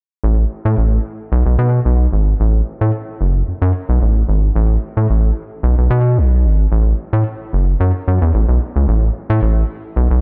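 Smooth and feel-good, this funk excerpt in a straight 4/4 features a rubbery square-wave bass playing alone, its hollow, bouncy tone shaped by a filter pluck with a fast attack and sustained notes, sitting up front with a slapback echo in a dark, dry production.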